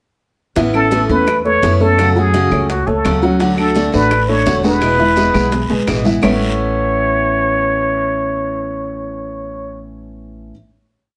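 A relaxed, warm Cuban son piece in the guajira style, heard from further back in a moderately reverberant studio with a softened top end, moves at 170 BPM in A major through a short verse before settling on a held final chord at 6.2 seconds. Up front, a breathy, whispered trumpet with a plunger mute and plate reverb sings an intimate, motif-based jazz melody with wah-wah and vibrato, over a natural-toned baby grand playing a montuno in octaves, a bright picked steel-string guitar strumming with muted slaps, and a thumpy, gut-strung upright bass playing a tumbao that anticipates the chords. Ringing high congas, tight hard-handed bongos with a hand bell, woody vintage claves on a two-bar time line and a raspy guiro that joins at 3.4 seconds fill out the percussion, which drops away after a drum fill from 5.5 seconds.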